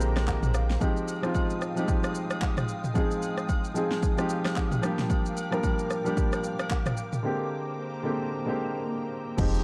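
A swung sixteenth-note groove at 112 BPM in 4/4 drives this soulful, hypnotic amapiano clip, cut from a longer piece. The electronic deep house kit sits up front with a punchy kick, fat snare, handclaps, rim clicks, shaker, toms and crash, all layered with a tape-warm sheen. Behind it, distant agogo bells and woodblock ring out in a large room, carrying tube shaker and group handclap textures. A round, sine-based sub bass anchors the opening Bb13 for the first 0.8 seconds while the warm, short-sustained grand piano plays a fill and then comps through Fm9, Gm7 and back to Bb13, over a glassy, ethereal FM pad with slow attack, chorus and its own reverb. After a break from 7.2 seconds, a deep, percussive log drum bass with a noise layer, fast attack and a decaying tail lands at 9.4 seconds, closing out a dark, dry mix.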